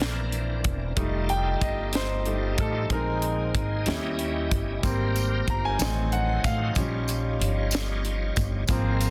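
In a slow, straight 6/8 at 62 BPM counted in dotted quarters, this jubilant, hopeful gospel excerpt in Eb major is led by an up-front concert grand piano with a brilliant, vintage sheen, its solo running the full 9.1 seconds over chords moving from C9 through Bb9sus4, Abmaj9 and Adim7 to Eb9. A shouting tonewheel organ with key click, chorus vibrato and slow rotary speaker holds sustained chords, while a dark, tight French horn section sits in the background. Woody pizzicato upright bass and a polished fusion kit with a high-tuned snare and punchy kick drive the groove, and a jingly tambourine joins at 4.8 seconds, all under light reverb in a dense, heavily limited modern master.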